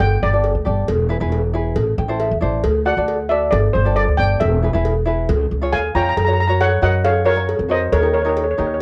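Heard through the homespun character of a cassette home recording with light reverb, this carefree, festive calypso excerpt at 136 BPM in G major puts a shimmering, bright steel pan played with hard rubber sticks up front, soloing through the first 6.2 seconds over a woody, thumpy pizzicato upright bass on gut strings and a metallic cowbell in a live room, while a light, fingerpicked tenor ukulele with a cassette-tape tint adds fills at 1.8 and 5.5 seconds.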